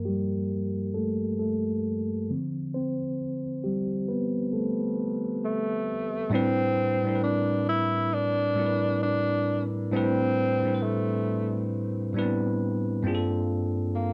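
A slow 4/4 groove at 67 BPM, swung at 66% on the sixteenths, sets a melancholic, nostalgic hip hop mood in A minor, tuned to A4 = 436 Hz. A bell-like tine electric piano opens the excerpt alone, its bright, clean tone sounding as if through built-in speakers, moving from Gm9 to Dm7 under a filter sweep that runs through the first 6.3 seconds. A breathy tenor saxophone enters at 5.4 s and takes the lead in a jazz style, its mellow subtone carrying vibrato, scooped notes and a smooth, punchy top within a narrow low-to-middle range. From 6.3 s the harmony settles on Am11 before turning to Gm11 at 13.0 s, with both instruments sitting up front. A low-pass filter softens the whole mix, and moderate studio reverb adds a short sense of space before the piece is cut off at 14.1 s.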